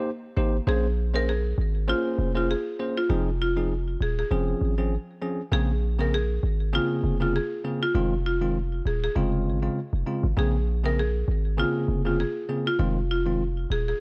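Sultry and smooth, this afrobeats excerpt from a longer piece moves at 99 BPM in Bb minor, with a gentle swing on the sixteenth notes. A buzzing marimba struck with hard mallets carries the melody in a narrow span from F4 to Bb4, its woody, percussive hardwood bars sounding dry and boxy, as if played in a small room. A bell-like tine electric piano supplies bright, clean accompaniment, while a hard-hitting 808-style bass enters at 0.4 seconds and sits loudest in the mix, its punchy sine tone layered with noise and hit with a fast attack before decaying. The harmony cycles through Bbm9, Fm7 and Dbmaj7/F after an opening Cm7. Studio reverb and a worn, warbling cassette-tape character with drifting pitch give the whole piece an aged, hazy finish.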